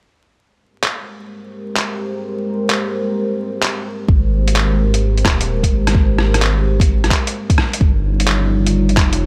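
A deep, rumbling detuned saw bass sits up front in this ghostly, rainy future garage excerpt, its saturated, beating tone pumping with the sidechain once it arrives at 4.1 s alongside a layered electronic kick drum. Before that, a lo-fi sampler-style kit of handclaps, hi-hat and rim click starts at 0.8 s, sounding compressed, pitched down and muffled, as if re-recorded in a large room, while a moody analog pad fades in beneath it. The pad holds sustained chords with a slow attack and long release, its chorused sawtooth and sub-octave layers pumping with the sidechain. At 129 BPM in 4/4 with a 66% swing on the sixteenths, the groove leans loose and shuffling over a steady Abmaj9 harmony that shifts to Eb7 at 7.8 s. The mix stays dry and close, with vinyl crackle hissing in the background, and the clip is cut from a longer piece.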